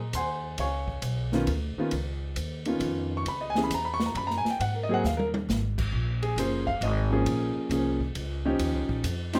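A baby grand piano with a natural, short-sustained tone and a woody, thumpy pizzicato upright bass on gut strings open this relaxed jazz waltz at 135 BPM, both sitting up front in a swinging 3/4 small-group setting. An acoustic drum kit joins at 0.1 seconds with dark cymbals, a medium-tuned snare and a boomy kick, and it plays a short fill at 5.0 seconds while the harmony moves from Ab9 through Dbm7 and Bbm7 to Eb9. The moderate studio ambience gives this brief, warm fragment of a longer piece a relaxed feel.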